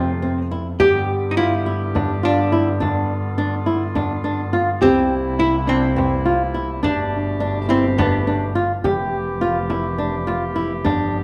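A dark, fingerpicked flamenco guitar sits up front, spinning arpeggios with audible finger squeak. Beside it, a clean, picked hollow-body archtop carries a second line until 8.5 s, while a focused, bowed double bass with vibrato anchors the low end. A soft-attack woodwind section holds distant, tight chords, and a deep frame drum played with soft hands enters at 0.2 s in the background. This hopeful, playful chamber piece in 7/8 moves through a moderate recital-hall reverb and is cut from a longer work, turning toward an Fmaj9 chord at 8.8 s.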